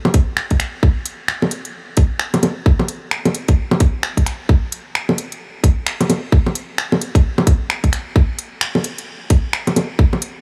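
Bathed in a digital ambience, this melancholic, nocturnal future garage excerpt swings through its 16ths as a tight, layered, overdriven electronic kick sits up front beside an organic electronic kit of bongos, finger snaps and smooth hi-hats, both playing from 0.1 s to about 10 s.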